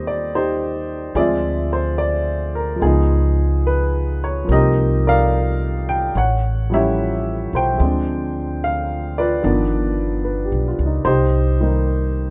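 This rough home demo carries a studio ambience, with both instruments placed up front. It is a short cut from a longer piece: a wistful, melancholic jazz ballad in C minor at 73 BPM in 4/4, with a swung eighth-note feel. A warm, intimate upright piano provides the accompaniment from Eb3 up to G5, its tone natural and woody, and the mechanical noise of its action is clearly audible. Beneath it, a pizzicato upright bass on steel strings plays from G1 to Eb2 with an acoustic, woody and warm body. Both parts play together for the full 12.3 seconds. The harmony opens on a rootless Abmaj9 and moves through Dm7b5, Db9, Cm11, A7b13, Dm7b5 and G7b13 before settling on Cm7 at 11.1 seconds.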